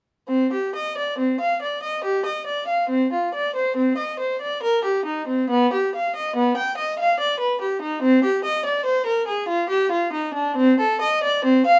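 A solo violin with a reedy, gut-string tone and light vibrato plays up front from 0.3 to 11.8 seconds, ranging from B3 to G5 in a period-style reading. This solemn, introspective classical passage, drawn from a longer baroque-style suite movement for unaccompanied violin, moves at 70 BPM in 3/4 with a rubato feel in C minor, tuned to A4 = 437 Hz. Light reverb and a dark production frame the single bowed line.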